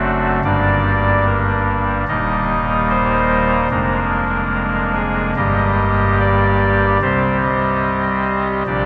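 A long, wet cathedral reverb surrounds this brief classical fragment, cut from a longer piece, and lets each chord hang in the air. It is a serene, reverent chorale in 4/4 for pipe organ alone, heard from 0.0 to 8.9 s. The organ speaks with a soft reed voice from an oboe solo stop in a baroque voicing, sitting up front with chiff on the note attacks and a tremulant shimmer on the sustained tones. Its range stretches from a deep Eb1 to Eb5 at the top. The rubato phrasing moves through Gm, Eb, Bb7/F, Eb/G and Cm, giving the passage an unhurried, prayerful quality.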